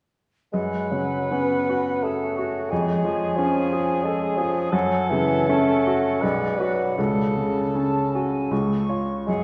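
Heard from further back in a reverberant scoring stage, this passionate, tragic fragment of a romantic movement for piano and orchestra in F# minor sways in a rubato 3/4 at 73-91 BPM, with a clear, polished baby grand piano up front carrying the melody, an airy, crisp-edged concert flute, a distant cor anglais with light vibrato and a clarinet set in the background playing second lines, and a mellow, smooth-topped bassoon supplying accompaniment from 0.5 to 9.4 s.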